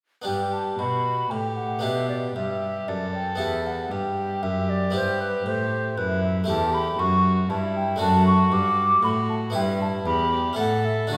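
Heard in a wet recital hall with a 1.5-second reverb tail, this short passage cut from a longer baroque-style sonata movement feels radiant and dance-like, moving at 116 BPM in 3/4 with a supple rubato in G major. An airy, bright harpsichord in the French style enters first at 0.2 s to supply the continuo accompaniment, and the other three parts join at 0.3 s and play through to 11.2 s. The baroque flute carries the most present voice on its second line, its wooden, pure tone close-miked with a crisp attack and expressive vibrato. A single violin takes the melody, though it sits more distant, its gut strings giving a dark, nasal, reedy period colour. Underneath, one cello holds the bass up front, its gut-string sound dusky yet smooth at the top, as the harmony moves from G through E minor and an open A fifth to D over F sharp before arriving on A.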